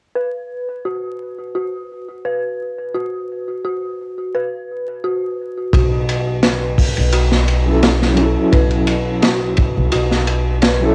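Cinematic and dark, this short trip hop excerpt moves at 86 BPM in 4/4 with a slight swing on the sixteenths, tuned a touch low to A4 = 439 Hz. An eerie, inharmonic FM synth bell opens alone at 0.2 seconds, playing arpeggios over a B5 chord. Its fast-attack, decaying tones are softened by chorus, a low-pass filter, analog delay and a cassette-tape haze. At 5.7 seconds the harmony moves to F#m7/B as a thumpy, gut-strung pizzicato upright bass sits on a low B and a crunchy breakbeat kit arrives up front. The kit's tight kick, medium-tuned snare, hi-hat and shadowy ride sound saturated and gritty, with a rolled-off top. A mellow, boxy upright piano joins the accompaniment at 7.7 seconds, its woody tones trembling with tremolo and tape echo. Light reverb, vinyl crackle and the texture of a home cassette recording give the whole passage a worn, intimate character.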